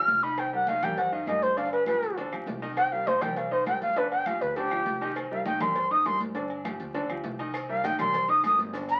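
Passionate and fiery, this nine-second salsa excerpt in C minor races along at 201 BPM, with a breathy, reedy concert flute soloing up front, its vibrato and crisp attack riding over a worn, brilliant baby grand piano that keeps a short sustain and audible action noise as it moves between C minor and G chords. A thumpy, dark gut-string upright bass plucks underneath, while congas, a tight high-tuned cowbell, ringing timbales and agogo bells, and woody claves sit in the background, joined by grainy maracas at 7.5 seconds. The whole cut carries the crackle of a very old 78 rpm record and the wet reverb of a small room.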